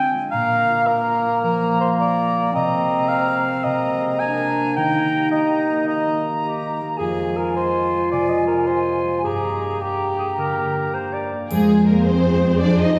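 This determined, adventurous cut from a heroic film score in 12/8 opens with a ringing fingerpicked concert harp weaving arpeggios beneath a mellow, up-front cor anglais, a bright vintage clarinet and a pure, crisp small flute group, before lush bowed strings enter at 11.5 seconds, with expressive violins carrying the melody and a background second line, close violas, a dark, even cello section and double basses, a faint triangle glint and a mellow French horn section entering at 12.6 seconds, all set back in a reverberant concert hall.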